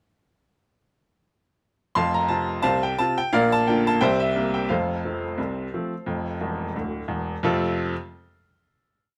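Close, detailed microphones and a light reverb put a bright upright piano up front, its woody, brilliant tone ringing with long sustain. This is a short, complete ragtime piece with a jaunty, cheerful mood, set in 2/4 with a lightly swung sixteenth-note feel. The solo piano enters at 2.0 seconds, carrying the tune with chords underneath over a stride bass, its range reaching from deep in the low register up to the high treble. The harmony moves from F to Bb, then to C7 and home to F. A piano fill arrives at 6.4 seconds before the piece settles on its final chord, with the playing ending at 7.9 seconds.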